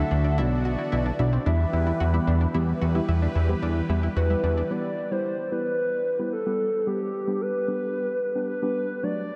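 Nocturnal and melancholic, this short pop fragment in E minor moves at 111 BPM in a straight 4/4, bathed in a cathedral-like reverb that gives the whole mix a dreamy, drifting quality. A hollow, woody synth lead with a clarinet-like voice and gentle vibrato carries the melody up front from start to finish, touched by chorus and delay. Beneath it, muted, felt-like synth keys supply dark, intimate accompaniment throughout. In the first half, a fat, detuned analog bass sits thick and forward, a swirling phased pad holds sustained chords, and a round analog pluck traces arpeggios in the background with a bright edge. Those three parts drop out around 4.7 seconds, leaving the lead and keys to carry on, while the harmony, having moved from Bm to Em early on, arrives on G near 6.9 seconds.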